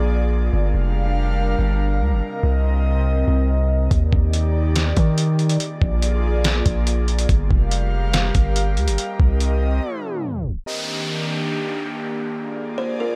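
An airy, breathy pad with chorus and sidechain pumping opens this dreamy, blissful cloud-rap passage, joined from the start by a deep, mellow 808-style bass and a brief electronic downlifter, as soft seventh chords drift beneath. A lo-fi sampler-style drum kit arrives at 3.9 s in a half-time feel, its thumpy kick, fat snare and hi-hat pitched down, muffled, compressed and overdriven, as though re-recorded in a small room. At 9.8 s the bass stops and a tape stop marks a short break, after which the downlifter returns over the lingering pad at 10.7 s. In the closing moments a plucked, woody kalimba with a buzzing, bright edge flickers in through a low-pass filter. The mix is dry and close, with the drums, bass and kalimba sitting up front.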